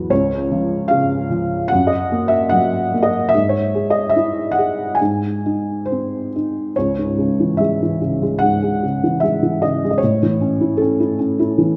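Melancholic and wistful, this short passage cut from a longer classical piece is a lyrical solo for felt-muted upright piano, moving at 74 BPM in 4/4 with a free, rubato feel. The piano plays alone from start to finish, spanning C#2 to G#5, and its tone is soft, dark and boxy, the thick felt lending an intimate, mellow hush while it sits up front in the sound. The harmony passes through C#, F#, Emaj13/G# and G# before settling into C# minor at 6.8 seconds, where a new section begins. From there a C#m chord gives way to A at 10.0 seconds, and the passage breaks off at 11.8 seconds. A moderate recital hall reverb surrounds the instrument, adding a gentle sense of space around its close, muted voice. The tuning sits slightly low, at A4 = 435 Hz.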